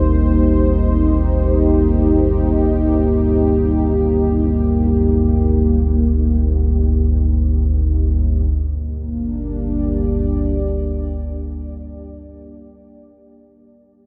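Dark and unsettling, this dark ambient drone in G minor drifts in free time, as a deep, ominous drone with a detuned, wave-folded rumble and its own built-in reverb and ensemble chorus holds the low end until 11.6 seconds, beneath a moody, full-bodied analog pad of evolving sawtooth and triangle tones with a sub octave and chorus, sustaining chords from Cm7/G to Gm at 8.5 seconds until 12.2 seconds, all in a dreamy mix soaked in huge ambient reverb.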